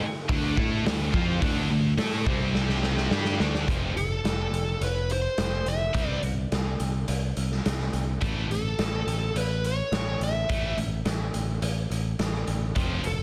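A straight 4/4 hard rock groove drives this powerful, anthemic passage, built on a double-tracked, high-gain guitar riff with a bright edge, a growly picked bass up front, and a raw garage drum kit with a punchy kick, sounding dark, saturated and gritty in a stone room. An overdriven hollow-body semi-hollow guitar plays its own riff in the background until a drum fill closes at 3.7 seconds, and at 4.0 seconds a bluesy lead guitar steps forward with distorted tone and tape echo. Light reverb and small room ambience sit under a dense, heavily limited modern master.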